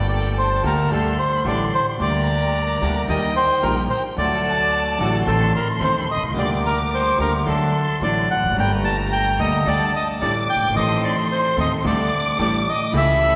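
Passionate and tense, this rubato tango fragment sets a reedy, up-front bandoneon on the melody while a smooth-topped violin section with vibrato carries a second line high above it. A clear concert grand piano with deep bass supplies the accompaniment, veiled con sordino strings add dark stabs in the background, and a growly, thumpy pizzicato upright bass anchors the low end. Everything sits in the wet reverb of a church or concert hall, with the harmony circling through minor, suspended and diminished chords that keep the tension unresolved.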